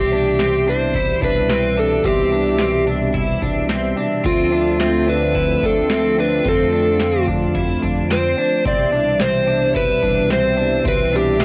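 A straight 4/4 pulse at 109 BPM comes from a booming analog drum machine that enters at 0.4 s with a deep kick, tonal snare and metallic hats, while a glossy, nasal chorused synth bass holds the low end of this blissful, ethereal dream pop piece in C major, cut from a longer work. Up front, a dark, overdriven slide guitar carries the melody through tape echo, over a smooth, detuned sawtooth pad with chorus and a bright, twangy electric guitar just at the edge of break-up picking arpeggios. The chords move from Cmaj7 through Dm9 and F6 back to Cmaj7, all set in a moderate spring reverb with the soft haze of a home cassette recording.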